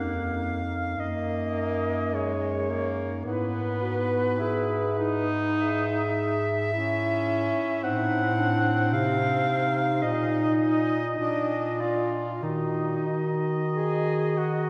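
A solemn, elegiac passage for a single-reed quartet opens with four voices sounding together in Eb minor, moving slowly at roughly 45-56 BPM in a rubato 4/4. A warm soprano saxophone carries the melody up front, close-miked with a soft attack and vibrato. Beneath it, a dark clarinet sings a second line from a distant, roomy position, while a bright tenor saxophone with vibrato supplies the accompaniment. A clear bass clarinet holds the bass, also placed up front. The harmony moves from Ebm/Gb through E/G# and an Adim7 near 7.8 seconds before settling on Bb and returning to Ebm at 12.4 seconds. A wet church reverb surrounds the ensemble, and the sound carries the worn, warbling character of old cassette tape with a warbly pitch drift, in a short cut taken from a longer piece.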